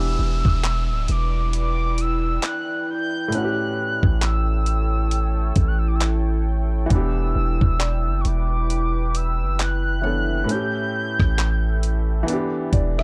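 Longing and late-night, this slow contemporary R&B excerpt at 67 BPM in E dorian sways on a swung sixteenth feel, with a round, horn-like synth lead singing the melody through chorus and digital delay over a soft, felt-muted upright piano with audible action noise, a deep 808-style bass and a gritty, compressed sampler-style drum kit of thumpy kick, hi-hat, rim click and handclaps sitting up front, while a moody detuned pad drifts in at 1.0 seconds, an electronic downlifter murmurs in the background until 6.9 seconds, a woody mallet-like pluck glints between 7.8 and 10.9 seconds, and the piano closes with a brief fill over the dark, dry production as the Em7 and A7 chords alternate.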